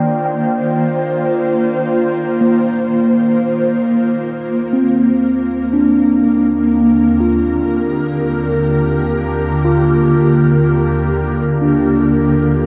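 Ambient music in free time and Eb major, this weightless excerpt cut from a longer piece rests on a single Ebmaj7 chord across its 12.7 seconds. An ethereal, airy pad sits up front with sustained, detuned chords colored by ensemble chorus, phaser and its own reverb, while a mellow tine electric piano, clean and heard through built-in speakers, plays arpeggios with delay. A huge, wet ambient reverb bathes the recording, and a worn cassette-tape character adds warbling pitch drift and a dulled top end.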